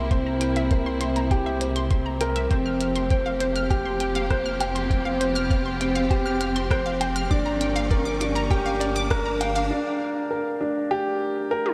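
Cinematic and moving, this piano and strings electronica excerpt moves at 100 BPM in a straight 4/4, a build-up that passes from C7 to Fsus2 and on to Gm7. An up-front, woody upright piano carries the riff through tape echo, while a bowed studio string section holds sustained chords with vibrato, portamento and a smooth top. An analog pluck spins bright, round arpeggios up high, coloured by chorus, tape echo, ring modulation, a filter sweep and sidechain pumping, and a dark detuned saw bass rumbles and beats underneath with its own sidechain pumping. A compressed, pitched-down, thumpy electronic kick sits up front beside a minimal click kit of clicky hats, rim click and toms recorded in a small room, and an electronic riser climbs in the background from 0.3 s. At 9.7 s the strings, bass and riser drop out for a short break, leaving the piano and click kit to carry on through a lush hall reverb until the cut at 11.7 s.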